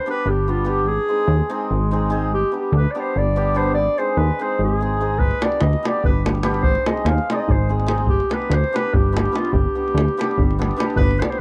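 A roomy, distant-sounding clarinet carries the solo melody up front in a classical style, weaving through G phrygian dominant in this bittersweet yet fiery Balkan wedding-band folk piece, set in a brisk 7/8 at 291 BPM counted in eighths. Beneath it, a bright, shimmering hammered dulcimer rings out the accompaniment over chords alternating between G and Ab, while a punchy, funky analog bass with a fast-attack filter pluck sits forward in the mix, and a tight, band-limited davul with a vintage character joins at 5.2 seconds. The dry, close 1970s-style studio sound has little reverb, and the passage is cut from a longer piece.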